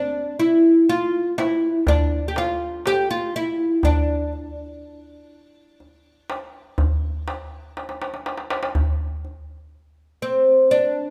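Melancholic and soulful, this short cut from a longer Turkish makam ensemble piece moves at 122 BPM, counted in eighths, in a straight 10/8 in D makam nihavent. The oud carries the melody from the opening between C4 and G4. It is a fretless, double-stringed instrument, plectrum-plucked and placed up front, with a bright, woody tone. A darbuka enters at 0.9 seconds, its metal shell giving a crisp, large and deep sound that is compressed and saturated, also up front though lower in level than the oud. A drum fill leads into a new closing section, and the darbuka stops at 9.4 seconds, leaving the oud alone to the end. The two play in a wet recital hall with a 1.5 second reverb.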